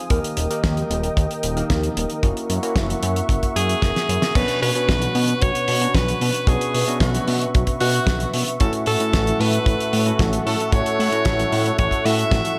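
An edgy, forceful alto saxophone takes the lead at 3.6 seconds, its scooped, pop-style notes sitting up front with a tape echo trailing behind, in this melodramatic, bittersweet italo disco fragment cut from a longer piece at 113 BPM in a straight 4/4. Beneath it, a fat, nasal analog bass built from detuned sawtooth and square waves drives with a saturated filter pluck. A warm, tight kick drum sits dry and up front beside a damped 70s drum kit with dark cymbals, a fat snare and gated reverb, which rolls through a drum fill just before the second section arrives at 4.4 seconds. A bell-like tine electric piano adds bright, clean stabs while a smooth, detuned sawtooth pad with chorus and a slow attack holds dark sustained chords. The harmony moves from Eb and Gb7 to Bmadd9 and A6, all set in a light reverb.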